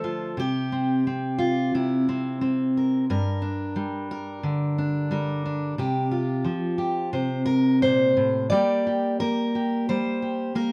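A fingerpicked steel-string acoustic guitar opens this short folk passage and carries it alone from start to finish, about 10.7 seconds in all. The dreadnought tone is dark and full-bodied, sitting up front in the mix and spanning from a low G2 up to D5. The mood is hopeful and peaceful, with a straight feel in 4/4. The harmony moves from C to Gm, then through Csus4 and Am before settling back on Gm near 8.5 seconds. A light reverb gives the guitar a gentle sense of space, and the fragment is taken from a longer piece.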